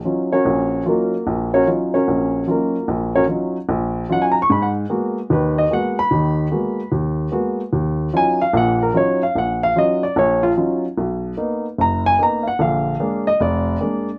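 Cool and swinging, this short solo jazz cut from a longer piece features a lone upright piano, dark and woody with audible action noise, sitting up front in light reverb as it moves through minor-ninth, major-seventh and dominant-seventh chords from the opening to 14.2 seconds.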